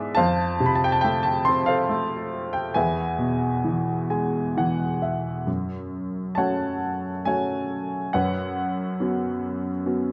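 Dark and wistful, this short classical excerpt from a longer piece features a lyrical solo upright piano at 68 BPM in 3/4, its uneven, rubato beats drifting through chords of F, E, F#m and Bsus2/F#, settling into F# minor at 5.5 s. The clear, worn, woody piano sounds slightly detuned and sits up front with long sustain, spanning E2 to C6 and adding a fill from 3.6 to 5.5 s. A moderate recital-hall reverb surrounds the dark, warm production.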